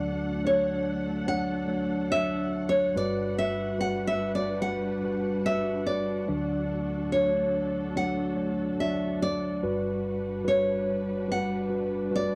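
A bright, full-bodied nylon-string guitar carries the fingerpicked melody up front, alongside a mellow, clean tine electric piano that supplies the accompaniment for the full 12.3 seconds of this hopeful, tender acoustic folk-pop ballad excerpt in D major at 72 BPM. Behind them, a dark, woody string section holds lush, bowed chords with vibrato and a soft attack, sitting lower in the mix. The dry, close 1970s-style studio sound frames a gentle alternation of Dmaj7 and Gmaj7.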